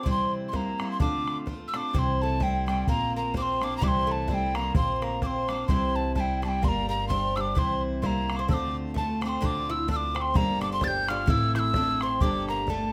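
Wild and driving, this Celtic polka excerpt at 128 BPM puts an airy, hollow tin whistle with vibrato and tongued chiff up front on the melody, while a bright, woody oud with doubled strings carries a second line, a fresh-stringed picked steel-string guitar provides accompaniment, a tight, damped bodhran drives the swung beat, and a dark, thumpy pizzicato upright bass joins at 2.0 seconds, all in a small room with moderate reverb.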